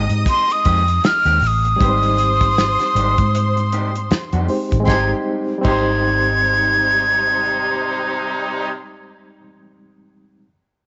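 A breathy, hollow jazz flute carries the melody up front in this romantic passage of lush 1970s-style soul, entering at 0.3 s and singing high in its register with vibrato. Beneath it, a round, foam-muted electric bass sits up front, while an acoustic soul drum kit with dark cymbals, a medium-tuned snare and a punchy kick plays until 5.9 s. A reedy, barky electric piano with light overdrive and fast tremolo provides the accompaniment, and a slightly broken-up electric guitar plays a riff in the background. A warm, woody string section adds a bowed second line with vibrato, and a clear but distant horn section joins with loose stabs at 4.9 s. The tune moves at an easy 78 BPM in 4/4 with a swung sixteenth feel, opening on an Abmaj7 chord in Ab major, with light reverb and a small room ambience around a soft top end.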